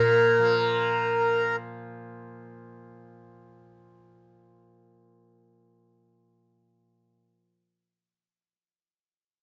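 Meditative and longing, this short cut from a longer Indian classical piece moves at 112 BPM in a straight 4/4, tuned to A4 = 440 Hz. A breathy, hollow bass bansuri carries the melody on Bb4, its bamboo tone straight and tongued with lifted highs, sounding only until 1.4 seconds. Beside it, a hand-pumped harmonium plays a second line on the same Bb4, reedy and nasal with a breathing quality, sitting up front before stopping at 1.6 seconds. Beneath them, a softly plucked tanpura holds a buzzing, shimmering drone from Bb2 to Bb3, lower in level, and continues alone to 7.4 seconds. The sound is dry with little reverb, giving the whole a rough home-demo character.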